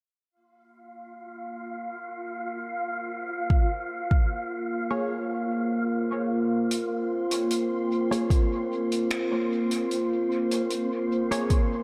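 A warbly, tape-like pad sits up front in this spacious, meditative slice of ambient dub, holding detuned, nostalgic lo-fi chords with a slow attack, long release, chorus and its own reverb while a filter sweep moves across it through the opening stretch. Beneath it, a breathy, wind-like tuned noise texture hovers in a higher register, airy yet dark, softened by ensemble chorus and reverb. A deep, layered electronic kick arrives up front at 3.5 seconds in a straight 4/4, and muted sawtooth dub stabs with a plucky, decaying filter add chorus and dub echo to the harmony, which rests on a Bb5 chord. The kick drops out at 5.1 seconds, and when the second section begins at 6.7 seconds a dark, smooth soul kit of finger snaps and hi-hat enters quietly, its hits trailing into dub echo. A wet plate reverb soaks the dreamy mix in this excerpt cut from a longer piece.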